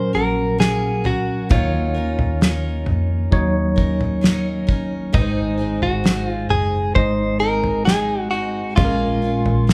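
A clean, direct-recorded electric guitar carries the melody up front, its picked tone compressed and scooped, in this tender, heartfelt pop ballad cut from a longer piece, moving at 66 BPM in a straight 4/4. Beside it, a tine electric piano plays the accompaniment through its built-in speakers, also placed up front, while a picked dreadnought acoustic guitar adds bright, full-bodied arpeggios more quietly, with fresh strings and a touch of finger squeak. A vintage fingered bass, foam-muted, round and dark, enters at 0.1 seconds, and a damped 70s drum kit follows at 0.6 seconds with a fat snare, tight kick and toms, dry and close. The harmony moves from Gb to Ebm7, then Ab and Bbm7. The band sounds as if playing live together in one large studio, wrapped in a moderate reverb.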